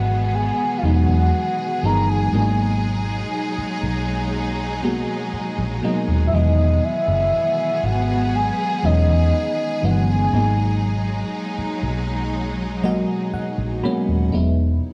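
Contemporary R&B in a sensual, moody vein, cut from a longer piece, where a round, foam-muted electric bass sits up front beneath a lush, dreamy FM electric piano with a soft pad layer, chorus and phaser, a clear, close studio string section holding sustained chords, and a soft octave-layered synth lead with chorus, tremolo and tape echo carrying the melody until 11.0 seconds, before the electric piano plays a fill from 12.3 seconds, all moving between Emaj7 and G#m7 in a dry, gritty hardware recording with transformer saturation, small-room ambience and light digital reverb.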